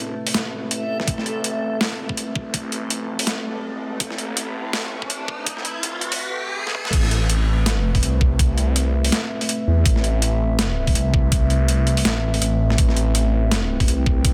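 Tense and cinematic, this half-time drum and bass excerpt opens on a moody, chorused analog pad with 12-bit grit and sidechain pumping, a swirling phased detuned saw bass and a reversed, dreamy backwards texture that lasts until 6.2 s, while a gritty, pitched-down boom bap sampler-style kit with an overdriven high-tuned snare and a knocking electronic kick from 1.1 s push a build-up with an electronic riser and swell into a drum fill and the drop at 6.9 s.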